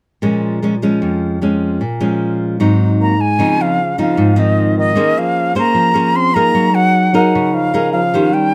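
A straight bossa nova pulse in four carries this melancholic, smooth excerpt, cut from a longer piece. A bright, full-bodied nylon-string guitar opens alone, fingerpicked in a classical manner and placed up front, moving between minor-seventh and dominant-seventh harmonies. At 3.0 seconds a jazz flute takes the melody high in its register, its metallic, airy tone shaded with vibrato and a soft attack, expressive and close to the listener. A breathy trombone enters at the same moment with a mellow second line lower down, sitting further back in the mix, its light vibrato and close-miked, jazz-style phrasing adding a hushed undertone. Moderate studio reverb gives the small group a natural space as the harmony settles onto lush major-ninth, minor-ninth and six-nine colours.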